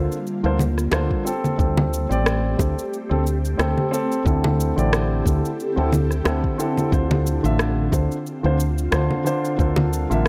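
Sunset chillout in D minor at 90 BPM with a gentle 16th-note swing, wistful and smooth, where a dark, mellow baby grand piano with tape echo comps up front over a round, punchy fretless electric bass, an ethereal detuned pad with chorus, phaser and reverb sustains chords from Gm11 through Am7, C69/A and Dm7 in the background, electronic cabasa, congas and rim click enter at 0.1 seconds, tight high-tuned bongos sit behind, and a soft electronic kick joins at 1.1 seconds, all captured in a dry, gritty hardware recording with light reverb.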